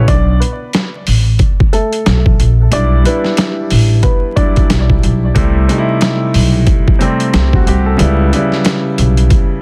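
Swung sixteenths at 91 BPM in 4/4 drive this gritty, moody boom-bap hip-hop fragment, where an overdriven, pitched-down sampler-style kit with a thumpy kick and medium-tuned snare sits up front beside a woody, pizzicato upright bass. A warm baby grand piano comps through Bm7, Em7, C6 and C#m7b5, and a dark, mellow upright piano carries a smooth, delayed vintage melody until 4.7 seconds, the whole set in small-room ambience with vinyl crackle and a dense, heavily limited master.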